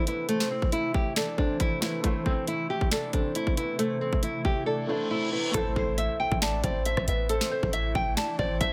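A fingerpicked nylon-string guitar carries the melody of this menacing, melancholic half-time trap cut in A minor at 137 BPM, filtered and echoed up front beside a round, chorused octave-layered synth lead, a very quiet felt-muted upright piano with audible action noise and a blurred granular cloud pad, while a trap kit of hard-clipped kick, sharp snare, bright hats, finger snaps and rim clicks drives the groove throughout as a reverse cymbal at 4.9 s leads into an impact at 5.5 s, where a deep, boomy sine 808 bass enters, all within a light reverb.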